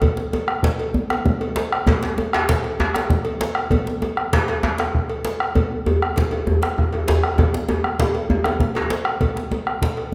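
A 12/8 pulse at 131 BPM drives this short, earthy and festive West African drum ensemble excerpt, where a round, vintage-toned bombo sits up front beside a deep, hard-handed djembe, a metallic cowbell rings from a distance, and a second, tight and cracking djembe joins at 1.9 seconds before a drum fill at 7.4 seconds, all carried in a recital hall's reverberant air.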